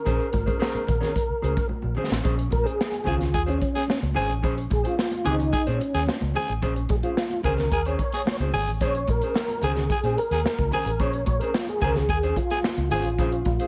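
A straight 4/4 groove at 110 BPM drives this hypnotic funk piece in Bb minor, built on an up-front big-band drum kit with a boomy kick, a dark, foam-muted fingered bass, a clean fingered electric guitar and high-tuned congas ringing in the background over a single Bbm9 chord. After a drum fill, a mellow tonewheel organ takes a solo from 2.3 s, its round tone colored by chorus vibrato, a slow rotary speaker and tape echo, while a gritty, growling tenor saxophone holds a second line from 3.1 s to 13.1 s. Light reverb gives the mix a gentle sense of space.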